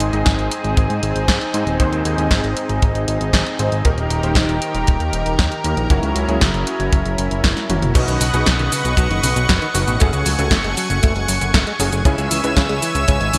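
Bittersweet and melodramatic, this italo disco excerpt moves at 117 BPM in a straight 4/4, with vivid 1980s-style digital production and a moderate plate reverb. A lush, detuned sawtooth pad with a soft attack and chorus sits up front holding sustained chords, beside a fat, thick analog bass with a filter sweep and fast attack. Punchy house drums with a layered electronic snare, sparkling hats, toms, cabasa and crash carry gated reverb, while a tight, dry acoustic kick anchors the beat from 0.3 seconds. In the background, a vintage electric grand piano with a clangy low end and short sustain plays stabs through ensemble chorus and delay. After a drum fill at 7.6 seconds, the harmony turns from Ab, Eb and F#7 toward Badd9, F#madd9 and C#m, and a clean, direct-recorded electric guitar enters at 8.0 seconds with picked, compressed arpeggios roughened by 12-bit sampler grit and delay.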